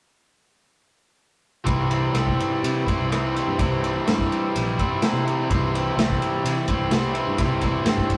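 Psychedelic rock excerpt at 126 BPM in 4/4 with a straight feel in C major, dark and trippy in mood, cut from a longer piece and captured as a rough rehearsal-room recording with a short, wet booth ambience. An overdriven, double-tracked semi-hollow guitar sits up front playing a riff from 1.6 seconds, joined at 1.7 seconds by a round, foam-muted fingered bass and a vintage acoustic kit of kick, snare, rim click and ride cymbal. The kit has a punchy kick, dark cymbals, a pumping small-room sound and a rolled-off top, with the band playing over a C chord.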